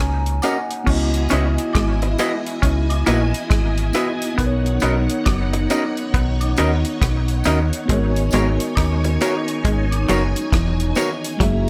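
This short cut from a longer piece opens with a mellow tine electric piano fill trailing dub echo, over a deep reggae drum kit, a round, dark fingered bass and a twangy electric guitar riff tucked in the background with its own echo. It is smooth, longing lovers rock reggae at 68 BPM in C# dorian, with a swung sixteenth-note feel and chords moving from D#m7 through C#m11 and Bmaj9 to G#m11. At 0.4 seconds an electric guitar through a small old amp adds up-front stabs, its tone slightly broken-up, compressed and lo-fi, while a distant tambourine and woodblock part with tube shaker and group handclap sits far back, carrying dub echo. From 0.9 seconds a lush vintage string machine ensemble carries a sustained second line, its slow-attack sawtooth voices thickened by a sub octave, a moving notch and ensemble chorus. Up front, the dry kit offers a tight kick, rim clicks, hi-hat and dark crash cymbals, and the whole sits in a light, small-room reverb.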